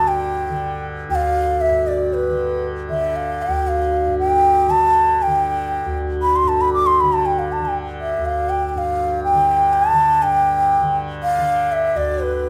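Hindustani classical music in raga Bageshri on D, tuned to A4 = 444 Hz and set in 5/4 at 118 BPM, carries an introspective, longing mood as the pulse gradually speeds up across this short 12.5-second fragment of a longer piece. A breathy bamboo bansuri carries the melody up front with a soft attack and airy, lifted highs, while a mellow, buzzing tanpura drone shimmers beneath it, both sounding together from the first moment to the last. The players share one large studio room with moderate reverb, and a new section begins at 10.2 seconds.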